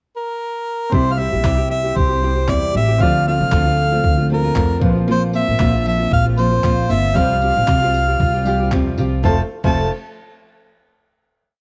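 A clear, close-miked harmonica sits up front from 0.2 s, playing call-phrase motifs with light vibrato and scooped notes in this carefree, sunny acoustic pop piece in F major at 116 BPM, with a gentle swing on the sixteenths. At 0.9 s the rest of the band arrives for a pre-chorus over C, Dm7, Bbsus2 and Csus4: a small-sounding nylon-string guitar strums sixteenths in open chord shapes, and a full-bodied steel-string dreadnought rolls fingerpicked arpeggios in the background. A background baby grand adds natural, short-sustained drop2 chords with grace notes, a woody, growly upright bass plucks a round, sustained line, and a gritty, compressed sampler-style kit supplies thumpy kick, snare, stomp and clap, tambourine and crash, all bathed in light studio reverb on a cassette home recording that resolves to a final F chord at 9.2 s.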